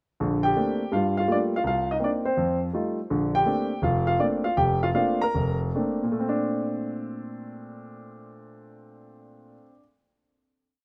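Swung eighths in 4/4 carry this relaxed solo jazz piece for warm, present grand piano, whose stride bass and close voicings support a hook-driven motif melody partly doubled in octaves, slowing from 3.1 s before settling on a final chord from 6.2 s, all captured in a rough home demo mix with light reverb.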